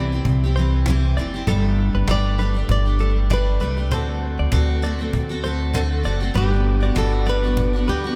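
A gently swung 4/4 groove at 98 BPM anchors this sunny, heartfelt acoustic pop excerpt in G major, with a thumpy, gut-strung upright bass played pizzicato up front and a very quiet, woody cajon with faint snares. A full-bodied, double-tracked dreadnought steel-string guitar picks the accompaniment alongside a fingerpicked flamenco guitar melody, finger squeaks audible, touched by analog delay, while a clean, direct-recorded electric guitar adds background arpeggios through its own delay. At 6.3 seconds a soft, flute-like tonewheel organ enters with sustained chords, its chorus vibrato and fast rotary speaker shimmering behind the rest in a small, lightly reverberant room.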